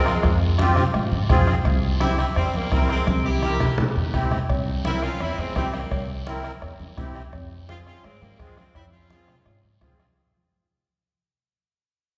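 Passionate and fiery, this cumbia fragment moves from Fm to C7 and back, with an edgy, close-miked saxophone section singing the melody with jazz-style vibrato over a reedy, shimmering musette accordion. Woody, thumpy pizzicato upright bass plays alongside a close, soft-beater bombo, raspy guiro and thick-skinned, distant congas. A drum fill at 3.1 seconds leads to ringing cowbell and timbales entering in the background at 4.5 seconds, as the whole recording fades out within a wet concert-hall reverb.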